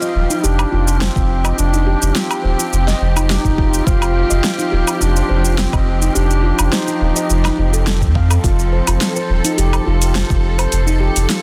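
Organic downtempo at 105 BPM in a straight 4/4, this short cut from a longer piece sits in F mixolydian over a single F7 chord, with an earthy, warm mood. A mellow, distant duduk carries the melody in a folk style with vibrato and a digital delay, singing from the start until 7.9 seconds. Beneath it, a handpan rings out meditative arpeggios with the warm ring of nitrided steel under the fingertips, treated with tape echo, while a veiled, con sordino string section holds dark sustained chords that pump against the beat. A round sine sub bass enters at 0.2 seconds and sits up front, also pumping, and an electronic kick with a deep, tape-warm thump arrives at 1.2 seconds. The deep house kit adds a fat snare, metallic hats, shaker and woodblock in a small room reverb, all within a dense, heavily limited modern master.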